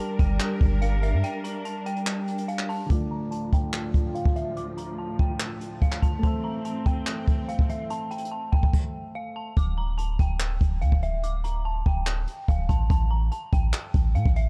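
Hip hop trap in D minor at 144 BPM with a half-time feel, this melancholic yet hard-hitting excerpt pairs an eerie, inharmonic detuned synth bell melody with chorus and phaser against round electric-piano-like keys, lush bowed strings that drop out at 8.7 seconds, an up-front brush kit with a punchy kick, dark cymbals, handclaps and hi-hat, and a deep sine 808 bass that returns at 9.6 seconds after a break and a filter sweep, all in a dark, small-room production.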